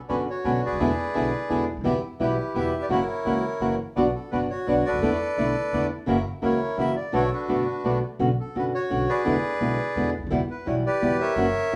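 Rubato 3/4 at 170 BPM drives this dramatic, passionate B minor tango, cut from a longer piece, where a reedy, bright bandoneon melody sits up front beside small, fingerpicked nylon-string guitar, a woody, thumpy pizzicato upright bass anchors the low end, and a second close-miked, dry, full bandoneon adds dark stabs in the background until 8.0 s, the band playing live in one room under a wet studio reverb.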